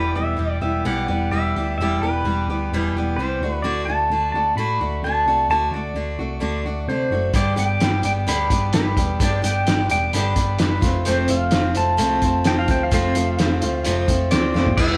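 A live band playing in a stone room with moderate reverb gives this nostalgic, jangly folk rock and heartland rock excerpt at 129 BPM an open, lived-in sound as it moves through Em, D, G and F. A twangy pedal steel guitar carries the melody with volume swells over bright, up-front picked acoustic guitar with audible finger squeak and a round, punchy hollow-body bass. A muffled, cloth-damped drum kit with a fat snare and dark cymbals enters at 7.3 seconds, a clean lap steel adds a brief second line at 12.5 seconds, and the drums close on a fill at 14.6 seconds.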